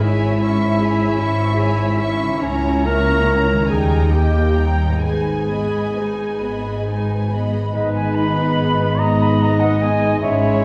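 Heard from further back in a recital hall with a generous, wet reverb, this slow romantic orchestral passage in G# minor moves in a rubato 6/8 at roughly 43-53 BPM, its mood elegiac and yearning. From the start, a lush violin section carries the melody with a smooth, distant vibrato, while a second violin section adds a focused line, and a solo clarinet weaves a mellow second voice beneath. Violas fill in the accompaniment from the background, cellos and double basses anchor the bass with an expressive bowed depth, and a very quiet concert harp rings out fingerpicked arpeggios across its span. The harmony passes from C#m/G# through A#dim/C# and D# before settling on G#m. At 7.7 seconds the phrase begins again, now joined by an airy silver flute and a soft-edged solo oboe as further second lines, with a roomy French horn section sustaining chords and a bassoon entering at 7.8 seconds to hold a single G#3 in the background.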